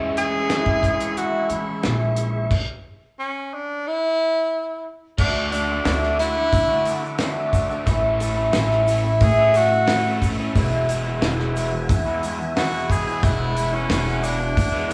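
A shimmering, octave-doubled twelve-string acoustic guitar, a woody pizzicato upright bass, a crunchy double-tracked overdriven guitar riff with phaser and a clean tonewheel organ in the background, carrying key click, chorus vibrato and fast rotary speaker, open this nostalgic slice of folk and heartland rock, joined at 0.2 seconds by an up-front, cloth-damped drum kit with a fat snare and dark cymbals. Over them a breathy, whispered tenor saxophone carries the melody with vibrato and scooped notes, and a stop in the band falls between 2.5 and 5.2 seconds. From 5.2 seconds a grainy egg shaker joins in the background, all set in a stone room with the sound of a band playing live together.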